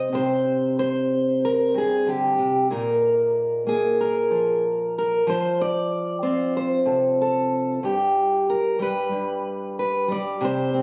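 Wistful and melancholic, this brief folk passage in C minor moves at an unhurried 93 BPM, carried by a single fingerpicked steel-string acoustic guitar. The guitar sits up front with a dark, woody tone and the character of old strings, moving through C5, Bbsus4 and F before the harmony drops away at 7.8 seconds. It was captured on a phone in the room and carries light reverb.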